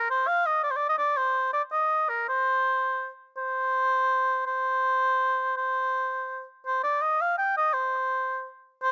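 A solo oboe, warm and up front with a light vibrato and a classical touch, carries this short medieval piece in a straight 6/8 with a driving yet mysterious mood. Recorded outdoors with little reverb, the sound is dry and close, and a new section begins at 6.7 seconds before the fragment breaks off at 8.9 seconds.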